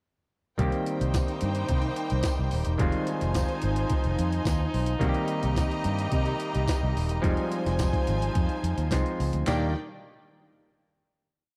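A glamorous, danceable disco piece at 108 BPM in 4/4 opens at 0.6 s with drums, bass, clav, strings and horns. A gritty, pitched-up sampler-style drum kit drives a four-on-the-floor beat, with a thumpy kick, a medium-tuned snare, handclaps, toms and sixteenth-note hi-hats. Up front, a round, foam-muted fingered electric bass plays a syncopated disco line with chromatic approach notes, while an overdriven clav through a combo amp holds stringy, percussive drop-2 chords dressed with grace notes. A clear studio string section bows swelling long notes as a second line, and a muted French horn section supplies a nasal, metallic sustained pad with light vibrato; a jingly tambourine joins at 1.1 s on the backbeat, tucked in the background. The groove cycles between Cm7 and Fm9 before landing on a final Ebmaj7 chord at 9.5 s, inside a dark production with light reverb and a small room ambience.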